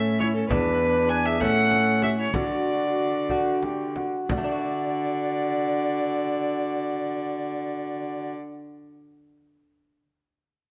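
In a straight 6/8 lilt at 60-67 beats per minute, counted in dotted quarters, this festive yet stately Renaissance-style consort dance in D major slows over its opening half, a brief cut from a longer piece tuned to A4 = 441 Hz. A dark, gut-strung cello carries the bass and a bowed period-style viola plays a second line; both solo players sit up front with reedy, smooth-topped tone. A mellow wooden tenor recorder sings the melody very quietly, airy and expressive, with vibrato and a crisp, chiffy attack. A bassoon adds warm accompaniment with light vibrato, while a delicate fingerpicked lute on doubled gut strings, some in octaves, stays very quiet beneath. A deep, close and dry frame drum struck with hard hands joins at 0.2 seconds and stops at 4.6 seconds, just after the first section gives way to the second at 4.3 seconds. The harmony moves from E7 to A to D, and a wet stone-room reverb with a 1.4-second decay surrounds the ensemble.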